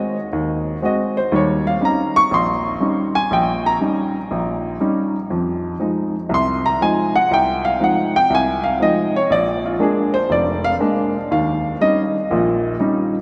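A warm, woody upright piano sits up front and carries this short solo jazz passage alone, spanning a broad range from deep bass notes to bright upper tones. The mood is sophisticated and relaxed, with a swung eighth-note feel in four. The harmony moves through dominant seventh colors, opening on Ab7 and settling onto Eb7, then passing through Fm7 and Bb7 before returning to Eb7 near 11.3 seconds. A heavy cathedral reverb surrounds the instrument, giving it the long, resonant tail of a church or concert hall, while the top end stays soft and rounded. Lasting about 13 seconds, the clip is cut from a longer piece.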